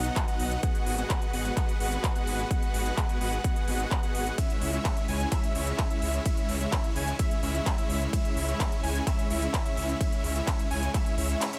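Euphoric and powerful, this festival progressive house excerpt in C# minor runs at 128 BPM in a straight 4/4 over B, G#m7 and C#m chords, with a huge, airy supersaw riff and a dark, bold unison lead playing arpeggios, both pumping to the sidechain and trailed by tape echo, while a thick detuned saw bass with chorus and sidechain pumping holds the low end, a bright bowed string section sustains chords in the background under the same pumping, and an overdriven big-room kit of handclaps, crisp hi-hats and ride cymbal is joined at 0.2 seconds by a punchy, up-front electronic kick, all in a dry, close mix.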